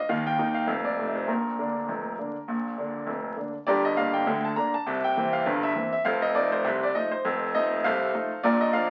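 Cheerful and playful, this short ragtime piano excerpt in 2/4 at 101 BPM swings lightly on its sixteenths as a solo bright grand piano, brilliant and up front with audible action noise and long sustain, ranges from F1 to Bb5 through chords moving from Eb to F7 and Bb before shifting to Gm at 3.7 seconds and then on to C7 and F7, all heard through a wet club reverb and the crackle and dulled top of a very old 78 rpm record.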